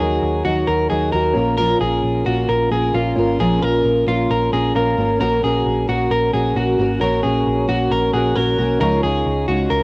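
An up-front electric guitar, slightly broken-up and compressed, leads this youthful, breezy indie pop excerpt with picked arpeggios bathed in spring reverb. Beneath it, a fingerpicked twelve-string acoustic guitar adds a full-bodied, shimmering, octave-doubled layer, while a vintage electric bass, dark, round and foam-muted, holds down the low end. Soft, mellow synth keys with an electric-piano character and a touch of chorus sit quietly in the background, stepping forward with short fills at 4.3 and 7.9 seconds. The harmony moves from D#m to A#m, then to F# and C#add9 in a steady, straight 4/4. Light reverb and a cassette home-recording sound give the whole piece a hazy, lo-fi intimacy.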